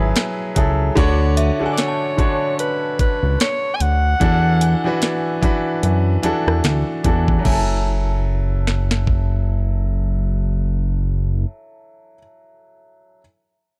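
A breathy alto saxophone opens this late-night, sensual contemporary R&B excerpt, its jazz-style line of subtone, vibrato and scooped notes singing over a clear, intimate baby grand piano and a fat analog bass. The piano sits up front with audible action noise and long sustain, moving through lush chords such as F#m9, Dmaj7 and E9sus4. The bass is thick and dark, a detuned sawtooth-and-square tone with a fast filter pluck, sustained notes and tube saturation. A produced trap kit with a knocking kick, sharp snare, bright hats, rim clicks and crash cymbal carries a gently swung sixteenth-note feel. From 1.4 seconds, a faint FM synth chime rings in the background with an inharmonic, decaying tone, chorus and analog delay. The saxophone falls away at 5.0 seconds, and the piano carries on to 13.2 seconds, outlasting the chime, which fades at 12.2 seconds. The sound is dry and gritty, with little reverb.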